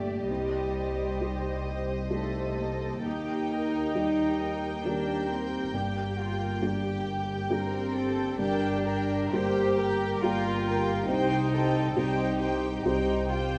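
A rubato 3/4 pulse at 67 BPM carries this bittersweet, longing cinematic film score excerpt in G minor, where a floating, pure violin section sings the melody over an intimate, vibrato-tinged second violin line, a lush, woody viola section in the background, a mellow felt-muted upright piano with thick felt and audible action noise, a dark, distant double bass section, and a soft-attack cello section that drops out at 12.8 s, the strings all bowed sul tasto and everything set in a moderate scoring stage reverb as the chords move from Cm through Eb and Gm back to Cm.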